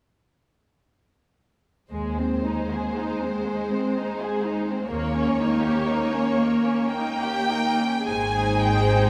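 A violin section carries the melody in this slow, serene romantic movement for string orchestra, singing with a rich, expressive vibrato in a rubato 3/4 at roughly 50-64 BPM in Ab major. Beneath it, a second violin section traces a soft-attack line that sits up front in the blend, while the violas fill in the accompaniment with a smooth, even, lush tone. The cellos, set back in the background, and the double basses share the bass, both bowed with vibrato and a warm glow. All five sections enter together at 1.9 seconds and sustain through to 9.1 seconds, moving from an Ab/Eb chord to Eb7 at 4.9 seconds before settling on Ab at 8.1 seconds as a new section begins. A long cathedral-like reverb of a church or concert hall surrounds the ensemble in this brief excerpt cut from a longer piece.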